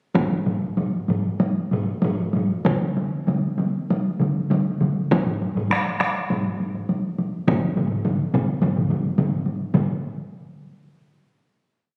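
Captured on a phone in a reverberant recital hall, this short, complete Japanese traditional taiko piece sounds powerful and driving, pressing forward from 95 to 114 BPM in a straight 4/4 before closing on a final hit at 9.7 seconds. A solo taiko drum struck with hard sticks sits up front with a compressed, saturated repeating pattern, while two taiko ensemble parts play taiko phrases: one up front with a live-room openness, the other hitting with heavy sticks and a dense, crunchy edge. A further ensemble part joins at 2.7 seconds with a repeating pattern that has a vintage, band-limited color.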